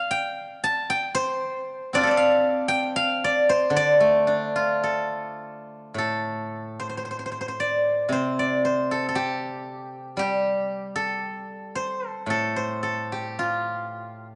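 A steel-string zither, picked with fingerpicks, sits up front alone for the whole of this short passage from a longer piece of Chinese traditional solo plucked-string music. Its acoustic tone is silvery and ringing, reaching from A2 up to A5. The mood is longing and contemplative, with a slow, rubato feel that stretches loosely over a 2/4 metre. The phrase opens with a first idea and moves into a second section at 5.9 seconds, continuing until 14.4 seconds. A moderate concert hall reverb with a 2.2-second decay surrounds the instrument, and the production itself is dark and warm, with nothing above 11.0 kHz.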